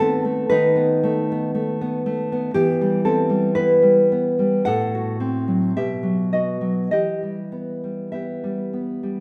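Intimate and melancholic, this short fragment of a romantic piece for solo classical guitar moves in a free, rubato 4/4 at roughly 50-61 BPM in E minor. The thumb-plucked nylon-string guitar sits up front with a warm, acoustic tone, ranging from A2 to F#5 as it passes from B7/D# to Em at 2.5 seconds, then through F#dim/A and B before settling on Em at 6.9 seconds. A moderate recital hall reverb gives the lone instrument a gentle sense of space.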